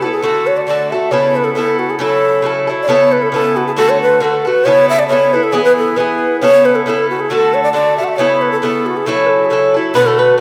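Set in the moderate reverb of a church or concert hall, this short excerpt of cheerful, lively Celtic polka in A major at 136 BPM puts a breathy, close-miked shakuhachi with soft-attack vibrato up front on the melody over a metallic, double-strung Irish bouzouki; a bright, twangy bluegrass banjo joins them at 9.9 seconds and a very quiet, hollow wooden flute slips in at 10.0 seconds.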